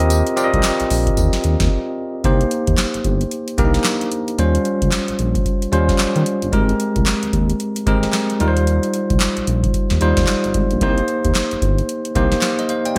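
A bell-like tine electric piano, a smooth synth bass and a booming analog drum machine all start together at the top of this bouncy, punchy new jack swing excerpt, set at 112 BPM in 4/4 with a 61% swing on the sixteenths in C minor. The drum machine sets the groove with a deep kick, a crisp snare, metallic hats, handclaps and tambourine, all sitting up front, with gated reverb and a short room on the snare, clap and hats. Under it, the sawtooth-and-square synth bass is dark and sustained, with a fast attack and a touch of vibrato, and it drops out at 12.4 seconds. The clean, direct electric piano rings out brightly on rich chords, moving from Eb69 through Cm7, Eb13 and Abmaj9 before circling back. A brief break at 1.7 seconds leads into the second section at 2.2 seconds, which carries the groove through to the end. Light reverb and bright 1980s-style digital production give the R&B feel a polished sheen.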